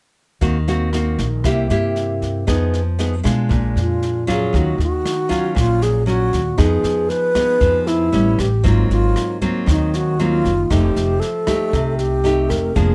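Lightly reverberant studio sound frames this melancholic, smooth bossa nova fragment at 117 BPM, where a bright, fingerpicked nylon-string guitar with audible finger squeak and a woody pizzicato upright bass sit over a brushed jazz kit with boomy kick, rim clicks and medium-tuned snare, joined at 3.8 seconds by a breathy wooden-headed alto flute up front with vibrato and tongued, expressive lines over chords such as Ebm6, Fm7b5 and Ab9.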